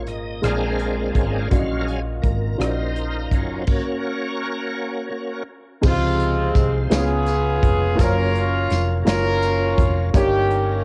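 Slow gospel in 6/8 at 56 BPM, soulful and uplifting, this short cut from a longer piece has the intimate feel of a home cassette recording in a small room with light reverb. A woody, slightly detuned upright piano plays accompaniment while a bright, shouting tonewheel organ holds sustained chords through chorus vibrato and a slow rotary speaker, its key click audible as it takes a solo over the opening bars. A dark, round hollow-body electric bass adds punchy low notes with transformer saturation, and an airy, polished country drum kit with a tight kick, medium-tuned snare, rim click, hi-hat and crash keeps the groove. The band breaks off at 3.7 seconds, and at 5.8 seconds the music moves into a new section with a jingly tambourine in the background, joined a moment later by a clear, tight horn section that enters up front with a jazz-style melody colored by analog delay. The harmony moves from Bb7 and Ebm9 through Dbmaj7 and Gbmaj7 before landing on Eb7.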